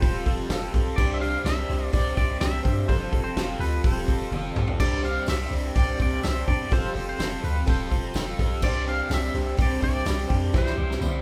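Folk rock with a heartland rock drive, this jangly, open-road clip moves at 125 BPM in a straight 4/4 in C major, cycling between Fadd9 and Csus2 before landing on C. A twangy, clean electric guitar carries the melody through a tremolo effect, while a crunchy, double-tracked overdriven guitar runs a riff under a phaser. A bright, shimmering twelve-string acoustic guitar, picked with audible finger squeak and octave doubling, fills out the accompaniment alongside a very quiet, woody and slightly detuned upright piano. A deep, punchy sine sub bass with a pitch-drop attack anchors the low end, and a natural country drum kit sits up front with a fat snare, punchy kick, hi-hat, crash and toms, playing fills at 4.3 and 10.5 seconds. A jingly, very quiet tambourine joins at 5.3 seconds, and the whole band sounds as if playing live in one room with a moderate large-studio reverb.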